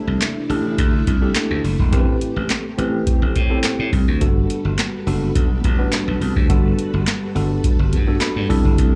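Danceable and funky, this short cut of early-eighties boogie funk has a booming analog drum machine up front, with a deep kick, crisp snare, metallic hats and handclaps, alongside a growly, punchy slap bass. A worn, slightly out-of-tune tine electric piano comps through plate reverb and slapback echo, while a lush sawtooth string machine holds slow-attack chords with ensemble chorus over a C69, Am7 and Gmaj9 progression. It sounds like a live gig heard through the venue's PA with club reverb, and the electric piano plays a short fill at 7.9 seconds.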